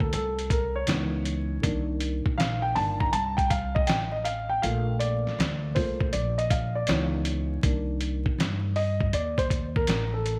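A lazy 80 BPM groove in 4/4 with heavily swung sixteenths sets the pace for this mellow, nocturnal jazz-hop cut, taken from a longer piece in C dorian and tuned slightly sharp to A4 = 441 Hz. A dusty, sampler-style soul kit plays throughout, compressed and gritty, with a thumpy kick, fat snare and hi-hat that sound re-recorded in a large room and sit up front. Beneath it, a pizzicato upright bass with steel strings gives a woody, growly low end. A dark concert grand piano, smooth and vintage in tone with deep bass and short sustain, carries a solo across both passes of the repeating section, the second beginning at 7.6 seconds. Its harmony moves from Gmadd9 through Dbm9 and Cm9 to Bbmaj9, then back through Dbm9 to Cm9, all set in light reverb and studio ambience beneath a layer of vinyl crackle.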